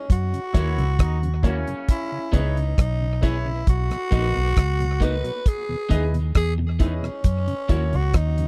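A slow, straight 4/4 roots reggae groove at 67 BPM opens this short cut, with a dry, damped 70s drum kit up front: a tight kick, hi-hat and rim click. Beside it sits a foam-muted fingered electric bass, round, punchy and amped, carrying the low end through the whole passage. A growling tenor saxophone takes the melody from the start, raspy and gritty with light vibrato, trailed by tape echo. A brilliant trombone section with soft attacks and vibrato adds a tight second line only from 0.5 to 2.3 s. In the background, a lightly overdriven tonewheel organ turns slowly through its rotary speaker with chorus vibrato, while a slightly broken-up, picked and compressed electric guitar fills in the accompaniment and a dark, mellow grand piano adds stabs over an F#7, C#m7, Bmaj7, Emaj7 progression. The sound is a close, dry 1970s-style studio recording with a faint mains hum, and the mood is sunny and uplifting.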